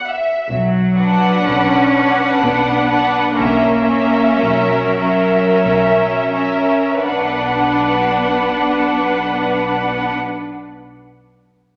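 Dark, woody violins carry the melody over smooth viola accompaniment from the very start of this solemn, melancholic slow romantic movement for string orchestra in B minor, a rubato 3/4 at 41-67 BPM that slows through its opening 7.0 seconds, as rich cellos and a softer, expressive double bass section enter at 0.5 seconds and an even second violin line joins at 1.0 seconds, every section bowed with vibrato and set in a wet scoring-stage reverb.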